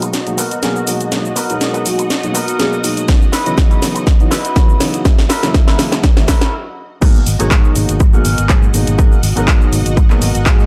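Filtered disco house at 122 BPM in G# minor, sensual and nostalgic, with a gently swung groove. A dark, mellow grand piano with audible action noise, a lush string machine, a twangy envelope-filtered guitar riff, fingered electric bass and an overdriven house kit with cracking snare, handclaps, hi-hat and cabasa all pump against the sidechain through a build-up and filter sweep, with a punchy, up-front electronic kick entering at 3.1 seconds. After a drum fill and a brief stop, the drop lands at 7.0 seconds back on G#m9, the whole mix dry and gritty as a hardware recording.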